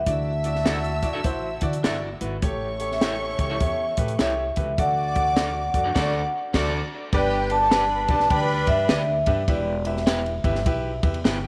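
Uplifting and danceable, this short cut of uptempo 1960s-style soul swings along in 4/4 with a lush, vintage glow under light reverb. A vibraphone struck with soft mallets carries the melody, its ringing, airy metallic tone shimmering with a slow motor vibrato, while a woody, thumpy upright bass on gut strings plays pizzicato underneath. A compact cocktail drum kit sits up front with a punchy kick, a high-tuned snare, hi-hat, ride and crash, all rounded off by a smooth, dark top. A grand piano fills in the harmony, a mellow jazz-style horn section with soft attacks hums in the background, and a dark, bowed string section plays sul tasto with tape echo until it drops out at 8.9 seconds. A bright, twangy electric guitar through a small old amp adds slightly broken-up, picked stabs with tape echo from 0.7 seconds, and the band hits an accent from 6.0 seconds before the music moves into a new section at 7.1 seconds.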